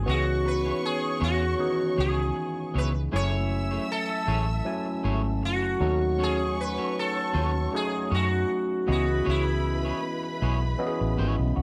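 A small room ambience surrounds this silky, cinematic soul excerpt in C# minor at 78 BPM with a light 16th-note swing, where an up-front sitar carries the melody with a buzzing, shimmering tone over a dark, foam-muted fingered electric bass. A barky, overdriven tine electric piano through a phaser supplies accompaniment, while a twangy electric guitar at the edge of break-up plays a riff with subtle chorus. A lush bowed string section with portamento adds a second line above very quiet, mellow French horn chords, all moving through C#m7, F#m9 and D#m7b5 before returning to C#m7 at 8.9 seconds.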